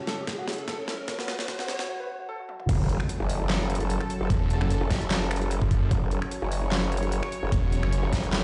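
A snarling, detuned sawtooth bass joins a growling, wobbling formant-filtered bass at 4.3 s in this menacing, aggressive heavy wobble dubstep excerpt in F# minor at 149 BPM with a half-time swing, where a warm grand piano melody with digital delay and a lush chorused pad lead the build-up, a riser climbs until 1.9 s and an impact marks the drop at 2.7 s, and an overdriven dubstep kit with a deep snare and bright hats sits over a knocking electronic kick inside a stone-room reverb that trims the top end.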